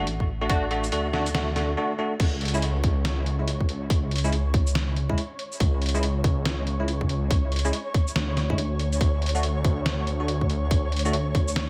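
A bright, bell-like tine electric piano opens the clip with clean stabs carried on ensemble chorus and dub echo, a filter sweep drawing it through a brief build-up over a D chord, while a dark, detuned saw bass rumbles up front beneath it. This is deep dubstep in a half-time, swung feel, meditative and shadowy in mood, cut from a longer piece. A tight, layered electronic kick sits forward in the mix, joined by a sampler-style trip hop kit whose gritty, pitched-down snare, hi-hat, shaker and crash carry a compressed, tape-warm character and a touch of studio reverb. At 2.2 seconds the drop arrives and the harmony falls away, while the beating sawtooth bass and the drums hold the ground beneath the continuing piano stabs. From 2.7 seconds a faint flickering, granular texture hovers high on a sustained C#5, its slow-attack grain softened by its own reverb. The overall sound is dark under light reverb, with the deep bass and kick dominating and the piano and texture floating quietly above.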